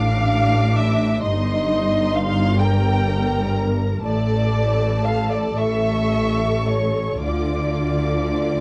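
A lush second violin section sits up front in this slow, romantic movement for string orchestra, its smooth, even line moving between C#5 and G5. Above it, the first violins carry the melody high between A5 and D6 with a focused, rich vibrato, though they sit further back in the blend. Violas add an expressive, close accompaniment coloured by portamento. Below them the cellos and a smooth, up-front double bass section anchor the bass, bowed with vibrato. In D minor and a rubato 6/8 at roughly 34-44 BPM in dotted quarters, the brief passage moves from a rootless Bb through Eb/G and D5/A to settle on Dm at 7.3 seconds, feeling yearning and solemn. Light reverb surrounds the ensemble, and a worn, warbling cassette-tape quality with drifting pitch gives this 8.6-second fragment from a longer piece a faded cast.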